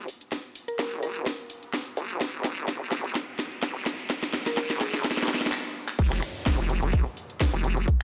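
Gritty and swaggering, this bass house cut moves with a light swing in the sixteenths. A nasal, resonant wobble bass with a vowel-like formant sweep sits up front, saturated and compressed with a touch of chorus. An up-front garage drum kit, with a cracking snare, warm hi-hats, handclaps, finger snaps, shaker and crash cymbal, is layered over a tight electronic kick. A woody, round, mallet-like FM pluck briefly carries the melody, its decaying notes treated with chorus and digital delay, while a very quiet riser and downlifter move underneath. Drum fills drive a build-up that halts at 5.5 seconds before the drop lands at 6.0 seconds, all set in a light digital ambience.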